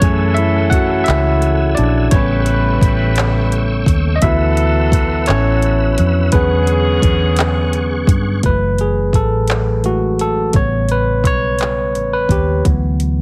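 Dry and heavily compressed like a radio broadcast, this slow, yearning and sultry six-eight R&B fragment, cut from a longer piece, is led throughout by a bright, barky tine electric piano soloing up front over chords moving from F#m9 through A7 and D69 to E13. A round, punchy, foam-muted electric bass and a smooth electronic drum kit with soft kick, metallic hi-hat and handclaps carry the groove for the full length. Until 8.4 seconds a clean tonewheel organ holds sustained chords with key click, chorus vibrato and a fast rotary speaker, while a warm, tight vintage horn section adds jazz-style stabs with light vibrato, stopping at 8.0 seconds.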